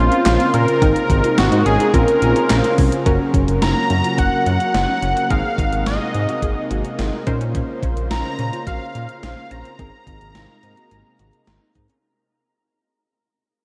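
Melancholic and nocturnal, this synth-pop fragment drifts through a dreamy mix soaked in a huge ambient reverb, fading out from 3.1 seconds onward over shifting minor and add9 chords. A bold, bright unison lead carries the melody up front with vibrato and delay, joined by a smooth synth bass that sits equally forward. Behind them are a lush pad with chorus, a funky polysynth comp, very quiet punchy pluck arpeggios, and an overdriven gated 80s digital drum machine with a thumpy kick, a gated-reverb snare, handclaps and hi-hat.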